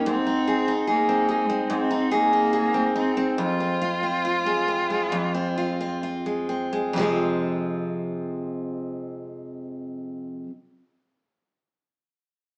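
A rich, bowed cello carries a smooth, even melody with vibrato, close and up front until 6.0 s, in this reflective, tender acoustic pop piece in F minor at 63-74 BPM that slows through its first seconds; a picked steel-string acoustic guitar with an auditorium tone plays up-front accompaniment to 10.5 s, and a very quiet, fingerpicked classical nylon-string guitar adds arpeggios with finger squeak until 4.0 s, all heard as a live band in one room through moderate large studio reverb with a small speaker sound.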